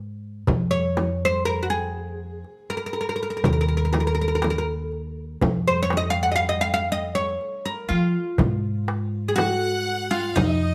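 In a straight 10/8 at 122 BPM, this longing, melancholic Arabic maqam ensemble piece in F maqam kurd sets a thumpy pizzicato upright bass beneath a crisp metal-shell darbuka in the background and a deep, large, dry frame drum, while an up-front, woody fretless oud carries the melody with plate reverb, and a biting studio violin section and a focused solo violin join briefly at 9.4 seconds before this cut from a longer piece ends.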